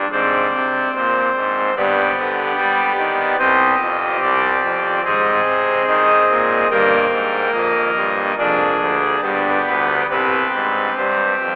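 Heard through a thin, telephone-like filter and drenched in cathedral reverb with a six-second decay, this dark, solemn chorale-style fragment of a longer classical piece unfolds in C minor at a rubato 72 BPM in 4/4. A solo pipe organ on a trumpet stop sits up front for the full 11.6 seconds, its brassy, bright baroque voicing and audible chiff spanning F1 to G5. The harmony moves from Abadd9 through G, Cm, Ab, Eb/G and Ddim/F back to G before settling on a bare C5 at 10.1 seconds.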